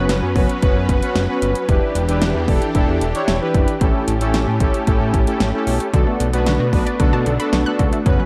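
Dark production with light reverb and a faint mains hum frames this nocturnal, cool synth-pop excerpt in B minor at 113 BPM, where punchy, overdriven electronic drums and a thick, detuned sawtooth bass sit up front beside bold, nasal synth brass with chorus and vibrato, vintage string-machine violas hold slow-attack chords in the background, and a round analog pluck adds chorused, delayed arpeggios from 5.9 seconds.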